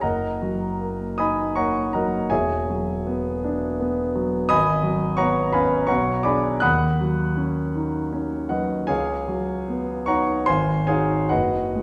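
A wet recital hall reverb surrounds this recording, and the room is heard from further back, giving the space a soft, lingering halo. Within it, a concert grand piano sits up front with a clear, natural tone and a deep bass that reaches down to E1, while its upper register extends as high as F#6. This is impressionist classical music for solo piano, luminous and serene in mood, moving in a gentle three-beat metre with a free, rubato feel. The harmony drifts through colourful extended chords, from an opening F#6 through E9, G#m11 and Bm6 to C#11 and G#7, before settling on F#sus2 near 11.3 seconds. Cut from a longer piece, the passage lasts just under 12 seconds.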